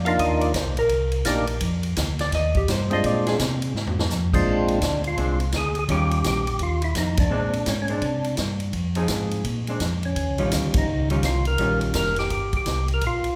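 A swung eighth-note groove in four drives this soulful soul jazz organ trio, cut from a longer piece and moving at a brisk, swinging clip. The acoustic big-band drum kit sits up front with a punchy kick, a medium-tuned snare, hi-hat, ride, crash and toms, and a short drum fill leads into the second section. A mellow tonewheel organ carries the bass line in a round, dark voice colored by chorus vibrato and a slow rotary speaker. Above it, a fat, percussive tonewheel organ with third-harmonic percussion plays the melody up front, also through a slow rotary speaker. A clean, fingered hollow-body electric jazz guitar with a shadowy tone takes a solo over the first 4.5 seconds before settling into accompaniment, and the band hits accents at 7.1 and 10.7 seconds over chords moving through Cm7, Bb9, Eb9 and Fm7. Everything is bathed in a wet recital-hall reverb that gives the trio the spacious ring of a church or concert hall.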